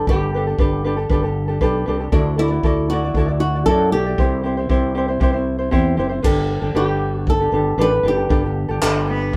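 Played live by a band in one room with light reverb, this sunny, easy-going acoustic pop excerpt in G major moves at 117 BPM, with a dark, fingerpicked flamenco guitar carrying the melody with audible finger squeak over thumb-plucked ukulele, a round fretless electric bass up front, and a distant, roomy unplugged drum kit played with bundle sticks, adding handclaps, crash cymbal and a punchy kick, before a single bowed cello with nasal vibrato enters at 9.1 s.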